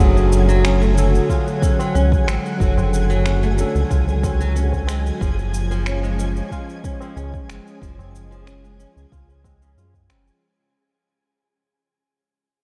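A warm, hypnotic stretch of organic downtempo in a straight four, cut from a longer piece and fading out across its full length. A round, deep analog bass sits up front, mellow and sustained with a fast attack and sidechain pumping, while a deep, tape-warm electronic kick joins at 1.3 seconds, re-recorded in a large room alongside electronic cabasa and finger snaps. A very quiet, low-tuned tabla with a short ring adds acoustic colour from 0.5 seconds, and a fingerpicked flamenco guitar plays arpeggios through a low-pass filter and delay, its finger squeaks audible. A clean tine electric piano through a combo amp carries the accompaniment with 12-bit sampler grit, delay and pumping until 5.2 seconds, as the harmony moves from D/F# to C#/F#. In the background, a smooth, warbling vintage pad holds detuned chords under lush chorus, and a bright, twinkling granular texture with octave-up shimmer rises in from 0.4 seconds, leaving the whole dreamy mix soaked in huge ambient reverb.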